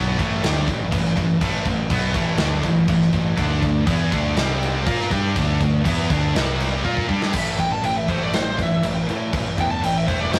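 Up-front fuzz bass and a big acoustic drum kit with a tight kick drive this aggressive, menacing hard rock excerpt, while three bright, distorted picked guitars grind out the riff in the background (the double-tracked, scooped one dropping out at 7.3 s), a barely audible tonewheel organ with slow rotary shimmer sustains chords underneath, and after a drum fill at 6.8 s a bluesy overdriven lead guitar with analog delay enters at 7.6 s, all captured as a rough rehearsal-room recording with tube saturation.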